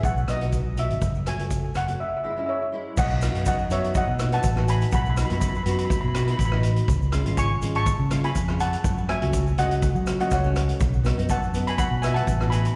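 Bouncy and carefree, this calypso at 122 BPM in 4/4 is cut from a longer live gig heard through the venue's PA, with light recital-hall reverb around it. A shimmering lead steel pan, played with hard rubber sticks, carries the melody up front with slapback echo and digital delay. Beneath it sit a double-tracked, fingerpicked classical nylon-string guitar with its own slapback echo, a punchy, amped fingered electric bass, a small-room drum kit with boomy kick, hi-hat, rim click and crash, and a grainy tube shaker in the background, as the chords move from B through F#m and C#m/G# to B7, C# and F#m7.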